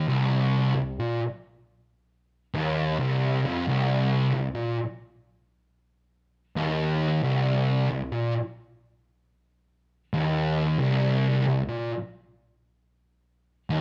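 A light digital reverb gives this short metal excerpt a touch of ambience, with a faint mains hum sitting beneath the sound. A single electric guitar plays alone from 0.0 to 13.8 seconds, its thick, dark fuzz tone double-tracked and placed up front. The picked part stays low, moving between C2 and Bb2 in C minor. At 67 BPM in a straight 4/4, the slow pulse feels hypnotic and sludgy. It is cut from a longer piece, so the passage plays as one unbroken stretch of heavy, distorted tone.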